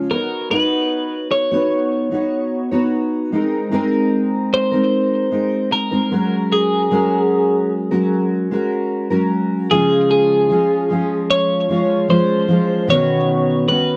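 In a straight 4/4 feel, this easy-going, heartfelt pop fragment pairs an up-front, double-tracked fingerpicked steel-string dreadnought acoustic guitar accompaniment with a bright, twangy, compressed twelve-string electric guitar melody sent through digital delay, all set in a small room with a dark, warm production, and it shifts into a new section at 9.7 seconds that lands on a Db chord.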